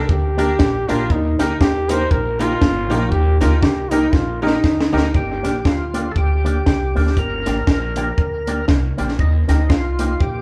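Driving and energetic, this ska excerpt in G minor moves at 119 BPM with a swung feel, cut from a longer piece and set in a wet, large studio reverb as if the band were playing live in one room. A clear, punchy trombone with vibrato takes the opening solo over jangly, metallic tack piano stabs until 5.1 seconds, and from 5.2 seconds a gritty, overdriven tonewheel organ with key click, chorus vibrato and a slow rotary speaker takes over the melody. Underneath, a woody, thumpy upright bass and a compact cocktail drum kit with a high-tuned snare, punchy kick and analog delay sit up front, with a drum fill from 4.1 seconds, while a twangy electric guitar through an envelope filter adds bright, clean accompaniment.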